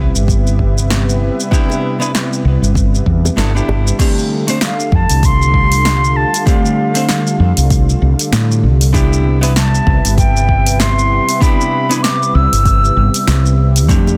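A lush, warbling unison pad with chorus holds sustained chords over a round, dark fretless electric bass from the very start, soon joined by a deep house kit with a punchy snare, hi-hat, shaker and crash, plus a deep electronic kick, setting a blissful, sunny sunset chillout groove with a swung feel. A clean hollow-body jazz guitar with delay enters at 1.5 seconds, while tight, high-tuned bongos sit softly in the background, and the chords move from Cmaj7 to F69 and back. At 4.6 seconds an airy, mellow wooden flute with delay takes the melody in a straight tone, floating over a dense, modern master with light reverb in this section cut from a longer piece.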